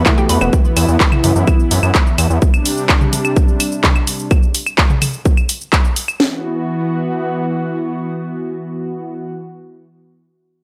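An up-front, overdriven house drum kit leads this hypnotic, cinematic melodic techno excerpt, its punchy kick and cracking snare joined by claves, handclaps, hi-hat, shaker and toms, all sounding re-recorded in a large room. Beneath it, a gritty, aggressive synth bass with a nasal, saturated sawtooth bite rides sidechain pumping until 2.4 seconds. A smooth, vintage analog pad carries sustained chords, its detuned, slow-attack tone warbling through lush chorus and the same pumping. In the background, a brief portamento lead with vibrato and dub echo and a bright, wave-folded pluck playing arpeggios through tape echo both flicker past in the opening moment. The harmony moves from E5 to C5 and back, and after the drums drop out at 6.3 seconds the pad holds on alone under light reverb.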